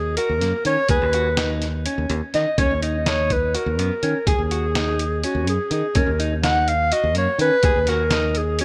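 A breathy clarinet carries the melody up front in this brooding, intricate progressive instrumental, soloing throughout in a jazz style with a mellow subtone, vibrato, scooped notes and a smooth top, bathed in plate reverb. Set in Eb minor and an uneven 7/8 at 249 BPM counted in eighths, the band moves with a straight feel through chords such as Ebm7, B/D# and Dbsus4/Eb before settling on Ebmadd11. A fingered electric bass sits up front beside the clarinet from the start, its tone bright, direct and growly. The trip hop sampler-style drum kit joins at 0.2 seconds, compressed and pitched down, with a gritty, tape-warm character, a thumpy kick, a medium-tuned snare and hi-hat. A dark, clean electric guitar, also entering at 0.2 seconds, plays fingered arpeggios softly in the background through spring reverb and digital delay, while light reverb gives the whole band a sense of space in this excerpt cut from a longer piece.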